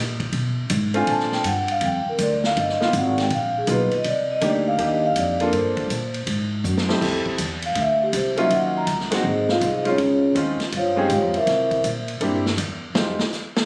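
A cool, swinging fragment of small-group jazz in the swing and bop vein opens with thumpy pizzicato upright bass at 0.0 seconds, soon joined by a vintage drum kit and a clear, open upright piano. Set in C minor at a brisk 162 BPM in 4/4 with a firm swing on the eighth notes, it moves through colorful harmony such as G#dim7, Bbmaj9, G7alt and Dbmaj9. The mellow, ringing vibraphone, played with soft mallets and the motor off, carries the melody up front, bathed in plate reverb. The drums have a small-room character, with dark cymbals, a medium-tuned snare, a punchy kick and a rolled-off top, while the bass sounds woody beneath the piano's comping. A drum fill at 6.6 seconds leads into a vibraphone solo from 7.0 seconds over a fresh run of chords. The sound, caught on a phone in a studio with moderate ambience, feels like a slice cut from a longer performance.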